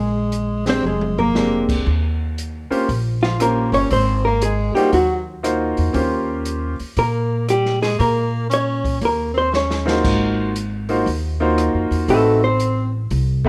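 Playful and relaxed, this short cut from a longer small-group jazz piece swings easily in a swing-and-bop vein. A clean, compressed hollow-body electric guitar carries the melody, played fingered, while a close-miked tenor saxophone with vibrato and a warm tone adds a second line beneath it. Pizzicato upright bass with gut strings sounds woody and thumpy up front, and an acoustic drum kit in a small room brings boomy kick, dark cymbals, rim clicks, toms and a couple of short fills. A clear baby grand piano comps with an intimate, natural sound and audible action noise, dropping out at 6.7 seconds and returning at 9.9 seconds. Light reverb surrounds the group as the harmony moves through rich dominant chords, takes a brief turn to minor and suspended colours midway, then returns to a dominant chord before closing on a diminished one.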